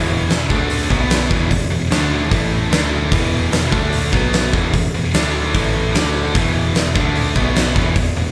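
Hard rock at 149 BPM in 4/4, heavy and aggressive, with a bright, high-gain distorted guitar and a dark, overdriven semi-hollow guitar both picking a riff that cycles through E5, D5, B5 and A5 power chords over a growly, amped picked bass. A huge arena drum kit joins at 0.3 seconds with a punchy kick, fat snare and hi-hat, sitting up front in a big acoustic room sound. The band plays live together in one room with light reverb, and this brief cut from a longer piece runs about 8.3 seconds.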